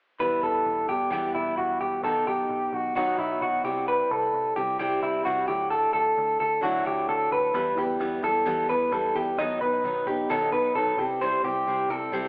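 A narrow, telephone-like sound sits inside a moderate large-studio reverb on this restless, wistful indie pop excerpt in E minor, moving at 131 BPM in a straight 4/4. Up front, an electric guitar through a small old amp plays slightly broken-up, compressed, lo-fi arpeggios with digital delay. A full-bodied jumbo steel-string acoustic guitar is fingerpicked beneath it, and a dark, round, foam-muted vintage bass sits in the background. The chords cycle Em, B, C and Dadd9 before a new section begins at 7.5 s and returns to Em, B and C until the cut at 12.3 s.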